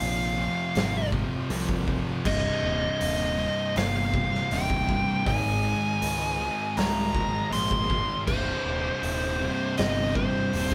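Recorded as a band playing live in one room with light reverb, this brooding, sludgy stoner and doom metal excerpt puts a distorted, up-front fuzz lead guitar melody over a riff shared by a compressed, double-tracked fuzz guitar in the background and two very quiet, dark thick fuzz guitars, grounded by a growly overdriven picked bass and an oversized low-tuned drum kit with a boomy kick and gritty, pumping room sound, while a faint, shouting tonewheel organ with key click and slow rotary speaker holds sustained chords moving from Fm to Cm, Ab and back to Cm.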